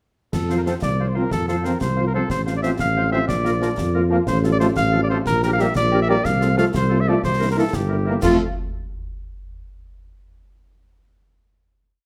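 A mellow, up-front cornet with light vibrato carries the melody of this short, spirited military-style march for wind band in F major, moving at 122 BPM in a straight 6/8 over a dark tuba playing bass on the beats and a close, dry marching snare over bass drum with dark clash cymbals. A warm, distant woodwind section in the background and a very quiet, dark French horn section add after-beat chords, while a clear, punchy trombone section supplies short accented and sustained chords. The rousing whole piece lands on a final F chord at 8.2 seconds, set in a moderate large studio reverb.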